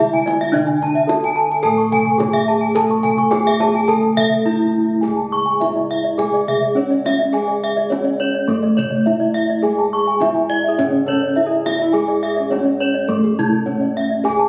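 Brilliant and hypnotic, this Balinese gamelan passage in a straight 4/4 is cut from a longer piece and played by bronze metallophones. Up front, a metallophone carries the melody in its wooden-mallet ringing tone, its paired tuning giving the sound shimmering beats. Below it another metallophone plays accompaniment, while two more spin arpeggios overhead: one close-miked, dry and full, the other struck with a horn mallet for an airy, bright sparkle. In the background, bossed gongs played with padded beaters supply a round, mellow bass, and a tight kendang adds percussion. Late in the passage, from 10.7 to 13.9 seconds, a barky tine electric piano adds a second line, lightly overdriven with medium tremolo through a combo amp. The ensemble was captured on a phone in a recital hall with moderate reverb, then given studio reverb and compression.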